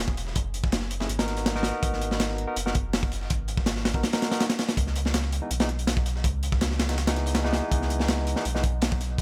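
Drum and bass with a jungle lean at 163 BPM in C# minor, this atmospheric, nostalgic clip cut from a longer piece sets a deep, round dub sub bass with tube saturation up front beside a crunchy, dark breakbeat kit of tight kick, medium-tuned snare and hi-hat, with a compressed sampler-style break of high-passed hats and snare sitting in the background. From 1.0 seconds a bright, barky tine electric piano, lightly overdriven through a combo amp, plays stabs with dub echo over chords moving from a thirdless F#7 to G#m9 and then C#m9 at 4.8 seconds. A small room ambience surrounds the gritty, rolled-off drums.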